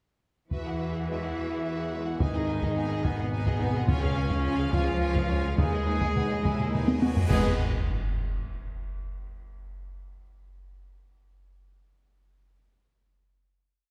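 A steady 6/8 taiko ostinato, dry and close, drives this short, heroic orchestral film cue, where a lush, expressive violin section carries the melody with portamento over a distant studio violin section and intense violas rocking a two-note figure, with cellos doubling the tune at the octave and smooth bowed double basses beneath. Mellow French horns and a very quiet trombone section entering at 1.1 s hold chords while a bright trumpet doubles the tune with stabs. Dark cymbal swells, crashes and concert bass drum join at 3.9 s, very quiet timpani add single strokes, and a huge cymbal swell rises into a sub drop that lands on the closing chord at 7.3 s in a reverberant hall heard from further back.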